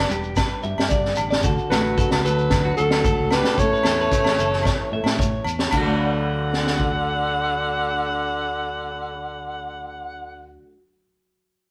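A straight 4/4 groove at 112 BPM carries this sunny highlife guitar band passage in D major, moving from G through D and A back to D. A raspy, up-front alto saxophone sings the melody with scooped notes and vibrato over a gritty, growling tenor saxophone second line. A twangy, clean electric guitar picks arpeggios through spring reverb, a fingerpicked acoustic guitar with finger squeak sits in the background, and a round, fingered electric bass holds the low end, while a vintage drum kit with a punchy kick, high-tuned snare and dark cymbals joins ringing agogo bells and grainy shekere until the percussion stops between 5.8 and 6.9 seconds, leaving the horns, guitars and bass in a moderate room sound.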